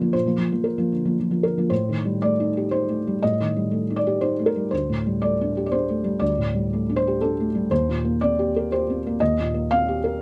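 Close, detailed microphones and a light reverb place a felt-muted upright piano up front, so the listener hears the thick felt and the audible action noise beneath each note. This is a short fragment of a neoclassical minimalist piano piece, reflective and melancholic, played solo in 3/4 with a loose, rubato feel. The tone is soft, mellow and dark, with a short sustain that gives the playing an intimate, hushed quality across a range from D2 to F5. A brief opening on Bb gives way at 1.7 s to a longer passage that moves through Am7b5 and D7sus4 before settling on Cm7/Eb at 7.7 s. The piece runs for just over ten seconds.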